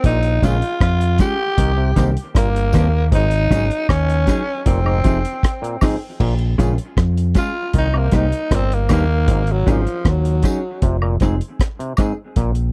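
Hypnotic and serious, this short cut from a longer roots reggae piece moves at an unhurried straight 4/4 pulse over a cycle of minor-seventh and suspended chords. The deep dub fingered bass sits up front with a dark, round, amped tone, beside a dry, tight drum kit whose kick, rim click, hi-hat and crash have a rolled-off top. A raspy tenor saxophone carries the melody with vibrato and a gritty, punchy edge wrapped in dub echo, and it takes a solo from 6.2 seconds onward. A mellow, compressed electric guitar adds clean fingered accompaniment with its own dub echo, while an overdriven clav plays stringy arpeggios through a combo amp. Tambourine, woodblock, egg shaker and group handclaps sit close and low in a dry, close 1970s-style studio sound with little reverb.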